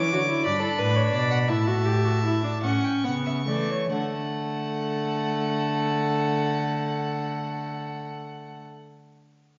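Elegant and lively, this excerpt from a longer baroque-style fugue for string quartet moves in a straight 6/8 at 43-62 BPM, counted in dotted quarters, in D major with tuning at A4 = 439 Hz, easing its pace over the first 3.9 seconds. All four players sound together from 0.0 to 8.6 seconds, each bowing with a reedy, gut-string period tone. A rich first violin carries the melody high above with light vibrato, while a second violin shapes the second line beneath it and a viola fills in the accompaniment. The dark cello, smooth at the top and placed up front, holds the bass. Harmonies pass through a rootless G and an A7 lacking its third to A, arriving on D as the second section opens at 3.9 seconds. The quartet is heard from further back in a wet recital hall whose 1.5-second reverb softens the sound, with the highest frequencies rolled off.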